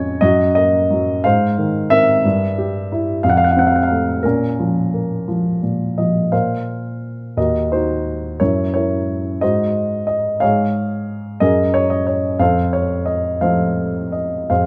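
Melancholic and dark, this short classical excerpt for solo piano unfolds in B-flat minor at a slow, rubato 6/8, with the dotted-quarter pulse drifting between 54 and 61 BPM. A warm grand piano carries everything alone, sitting up front with a short sustain and spanning Eb2 to Gb5. The harmony moves through Ebm/Gb, Ab6, Gm6 and F before settling on Bbm, then a repeat of the opening phrase begins at 6.3 seconds on Bbsus2 and travels through Ebm, Gb7, Ab7, Db/Ab and Gbadd9 before landing again on F. Close, detailed microphones capture the instrument intimately, while a moderate recital hall reverb of about 1.5 seconds lends the lyrical line a sense of space. The fragment ends at 14.7 seconds, cut from a longer piece.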